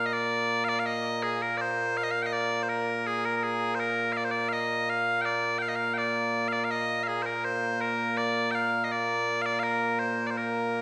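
A straight two-step pulse drives this stirring, proud piece of Scottish traditional pipe music, cut from a longer performance and lasting 10.8 seconds. Solo bagpipes carry it alone from the first moment, their tone bright and piercing, continuous and set up front. A wet recital-hall reverb with a 1.5-second decay surrounds them, giving the sound of a church or concert hall.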